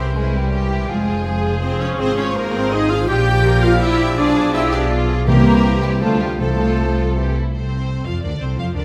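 Restless and urgent, this short passage, cut from a longer classical piece, moves in a brisk 3/4 at 154-177 BPM, starting in F minor before brightening into F major from 3.1 s. A very quiet, warm violin section carries the melody with smooth, lush vibrato, while a very quiet solo clarinet weaves a secondary line, joined in the background by a clear second violin section, a hollow, airy flute section and a soft-edged oboe. Beneath them, a clear bassoon and a rich viola section supply accompaniment, a very quiet French horn section holds sustained chords, and a close cello section joins an up-front, distant-sounding double bass section on the bass line. Timpani struck with hard mallets enter at 5.3 s, articulate and set back in a live room, as the harmony drives through diminished and dominant chords toward a cadence on C. The winds and horns drop out around 7.2-7.4 s, leaving the strings to settle on F over C, all wrapped in a wet scoring-stage reverb.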